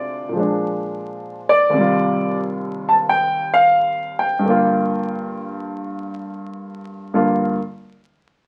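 Late-night and moody, this short solo jazz fragment in G minor, cut from a longer piece, drifts at around 88 BPM in 4/4 with a swung eighth-note feel and a loose rubato. A single baby grand piano carries everything, heard from the very start until 7.6 seconds, its tone warm and natural and placed up front. The harmony moves from Bb7 to Eb69 at 1.7 seconds and settles on Gm7, giving the passage a brooding, unresolved colour. The piano's range stretches from the low D2 up to A5. A moderate studio reverb adds a gentle halo, while the sound of a very old 78 rpm record, complete with vinyl crackle, lends the whole recording a dusty, bygone character.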